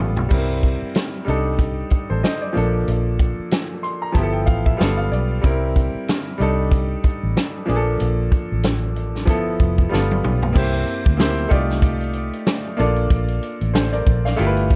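The recording has a dark, warm, small-room production, with the piano and drums sitting up front. This is a lush 1970s-style soul cut in Bb major, taken from a longer piece and moving at an unhurried 94 BPM in 4/4 with a gentle swing on the sixteenths. A clear, intimate baby grand piano carries the accompaniment, its action noise audible, and it steps forward with a fill at 3.5 seconds. Beneath it, a vintage fingered electric bass gives a round, foam-muted, amped tone. The acoustic drum kit brings dusky cymbals, a medium-tuned snare, a tight kick and toms, with a rolled-off top end, and a drum fill at 9.9 seconds leads into a new section at 10.6 seconds. The harmony leans on rich extended chords such as Cm69, G13 and Bbmaj7, giving the whole a plush, mellow glow.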